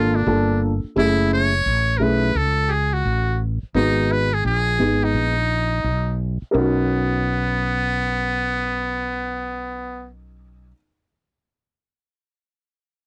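Swung sixteenth notes give this relaxed hip hop groove in 4/4 a smooth, easy sway, with minor ninth chords drifting under a jazz-style solo on trumpet with a metal mute, its tone buzzy, breathy and up front, colored by cassette tape. A dark baby grand piano plays boxy, short-sustained chords, also tinged by cassette tape, while a round, punchy fretless electric bass holds the low end, and the harmony shifts to a major ninth chord at 6.5 seconds. Light reverb and a homespun cassette recording wrap this short cut from a longer piece, with the trumpet stopping at 10.1 seconds.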